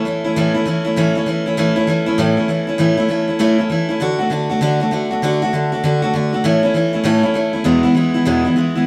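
A bright, full-bodied jumbo steel-string acoustic guitar sits up front, picked across a solo that runs from 0.0 to 8.9 s and moves from A to D, back to A, then E. The rock groove is upbeat and retro, with a swung eighth-note feel that gives it a loose, bouncing lilt. A moderate stone-room reverb and the sense of a band playing live together lend the short fragment an open, natural ambience.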